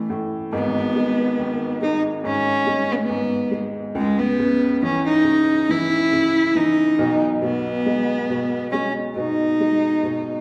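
In a straight, unhurried 4/4 feel, this short pop fragment, cut from a longer piece, carries a heartfelt, hopeful mood from its first moment. A single bowed cello sings the melody in a dark, smooth voice with vibrato, staying even in its middle register. An upright piano accompanies from 0.0 to 10.4 seconds, its clear, woody tone arriving close and intimate, with the clatter of its action audible beneath the notes. Both instruments sit up front and share a slightly boxy character, while the cello stands a touch louder than the piano. The harmony moves from A5 to G#m, then C#m, and settles on B6, all wrapped in the lingering reverb of a church or concert hall.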